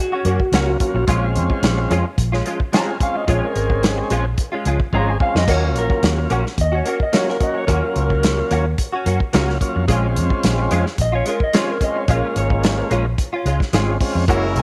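A clean, direct-recorded electric guitar leads this brooding, soulful excerpt of straight-eighth soul blues, soloing across the full 14.6 seconds in Bb minor at 109 BPM in 4/4, its picked, compressed tone carrying an ensemble chorus as it also supplies stabs in the middle register. Behind it, a second guitar through a small old amp plays a slightly broken-up, lo-fi second line higher up, bathed in spring reverb. A foam-muted fingered bass, round and punchy, sits up front alongside a soul drum kit with a tight kick, a medium-tuned snare and dark cymbals, which plays a fill near 4.9 seconds. A thick tonewheel organ enters at 0.5 seconds, lightly overdriven through a slow rotary speaker. The harmony moves between Ebm7 and Bbm7, and a brilliant horn section arrives with sustained chords only at 14.3 seconds as the clip ends, all within a light studio reverb.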